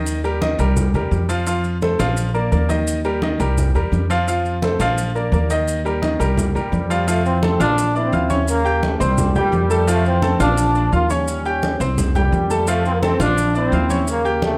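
A mellow trombone section with light vibrato takes the melody at 6.6 s, tight and up front, in this sunny, festive salsa at 171 BPM in F major. Underneath, a brilliant, polished upright piano carries the accompaniment beside a dark, thumpy pizzicato upright bass on gut strings, while soft-handed congas sit distant in the background and grainy maracas add texture. The sound is close and detailed with light reverb, and the passage is cut from a longer piece.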